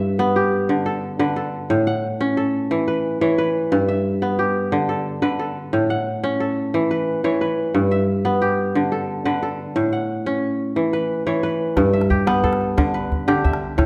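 West African traditional string music with a flowing, warm mood, moving in a straight 12/8 as the chords rock between G and A. The kora carries the piece from the start, its fingerpicked arpeggios ringing crisp and up front across a broad range, and at 11.8 seconds a deep, close calabash joins for the final stretch. A wet recital hall reverb surrounds this short extract, cut from a longer piece.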